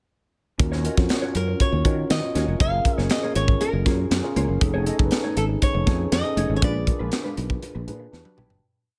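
A crisp sixteenth-note studio groove at 119 BPM in straight 4/4 drives this polished 1980s jazz-funk pop piece, its fusion drum kit airy and up front with a high-tuned snare and punchy kick. A growly, sustaining fretless bass plays an agile syncopated line beside it, while a mellow tine electric piano, bathed in lush chorus, adds syncopated rootless chords with grace notes and short fills. In the background, a dark, compressed electric guitar with analog chorus keeps up a clean fingered rhythm riff. From 1.4 seconds a bright, fingerpicked flamenco guitar carries the melody in motif-based call phrases, finger squeak audible on the strings. The glossy, urban mood rides a harmony that moves from D#m7 through F#maj9, F7alt and A#7b9 to Em7, all set in a light small-room reverb. A fade-out begins at 6.6 seconds, and near the end a closing electric piano fill enters at 7.9 seconds, followed by a drum fill at 8.1 seconds.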